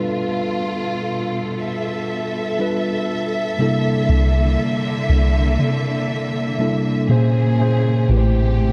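A mellow tine electric piano and a lush, bowed string section with expressive vibrato open this moody, sensual R&B fragment at a slow 60 BPM, with a light swing, moving through G9 and C13 chords. At 4.1 seconds a deep, round 808-style bass enters with a dark, decaying tone. The harmony then slips to Bbm7 and Am7 before the cut, all set in a dreamy mix soaked in huge ambient reverb.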